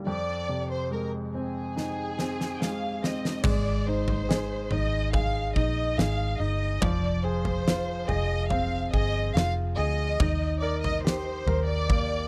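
Intimate grand piano, its action noise audible, opens this heartfelt, hopeful pop ballad excerpt at 71 BPM alongside a lush, vibrato-rich violin section carrying the melody up front; a huge arena drum kit with a fat snare and bright cymbals enters with a fill at 1.8 seconds, and a dark, round, foam-muted electric bass joins at 3.4 seconds as the chords move from Fm7 through Ab, Fm and Eb in a dry, close 1970s-style studio sound.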